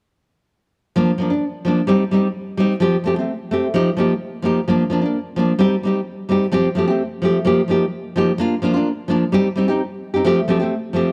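A fingerpicked nylon-string guitar carries this sunny, joyful highlife excerpt on its own, sitting up front with a full-bodied, deep classical tone. Set in Bb major at 129 BPM in 4/4, the playing has a gentle swing on the sixteenths that keeps the lilt buoyant. The guitar cycles through Bb, Cm, Fadd9 and Ebadd9, the added ninths lending the harmony a bright, open glow, and stays within a compact middle range. A moderate echo-chamber reverb gives the instrument a spacious halo around its notes. After two passes through the progression, a new section begins at 8.4 seconds and restarts the same cycle before the clip ends at 11.1 seconds, cut from a longer piece.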